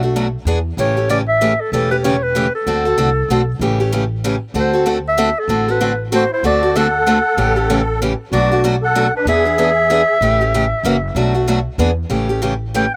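A breathy, close-miked clarinet carries the melody in this lively, charming swing waltz for acoustic strings, its subtone voice colored by vibrato, scooped notes and a slapback echo. Beneath it, a bright, boxy parlour guitar with fresh strings is picked up front, while a thumpy upright bass with gut strings adds a dark, woody pizzicato foundation. From 6.1 s to 10.2 s, a reedy musette accordion slips in as a second line, its wet tuning giving a shimmering edge. The swung eighths and triple metre move through a chain of dominant sevenths around A7, D7 and E7, with Bm7 and F#7 turning the phrase back home. Recorded outdoors with very little reverb, the sound is dry, and the excerpt is cut from a longer piece.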